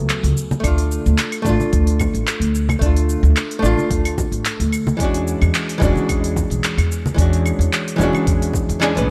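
An archtop guitar and an upright bass open this relaxed, smooth sunset chillout excerpt together at 0.0 seconds. The guitar sits up front, electric yet dark and clean, its picked hollow-body tone trailed by analog delay as it voices chords from F#m11 to Dm and on to E13. Beneath it, the pizzicato upright bass sounds woody, warm and thumpy on steel strings. A produced R&B kit brings smooth hats, cabasa, claves and handclaps, and bright, close, dry congas slip in at 0.5 seconds, staying in the background. An electronic kick with a knocking, tape-warm character arrives at 0.6 seconds, anchoring the easy 110 BPM groove and its light 16th-note swing. Light reverb and a digital ambience give the mix a soft sense of space.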